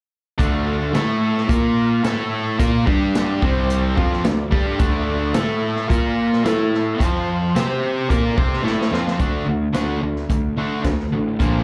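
Driving and brooding, this live classic rock excerpt in D minor moves at 109 BPM in a straight 4/4, with a bright, overdriven electric guitar up front playing a riff with slapback echo, alongside a hollow-body semi-hollow guitar riffing in the background. Fuzz-laden picked bass and a natural vintage drum kit with a punchy kick, medium-tuned snare and rolled-off hi-hat carry the groove, while a very quiet, gritty tonewheel organ holds thick sustained chords with key click and slow rotary until 9.2 seconds, as a drum fill running from 8.6 seconds comes to its end. The band is heard through a club PA with light room reverb, giving it a raw gig atmosphere.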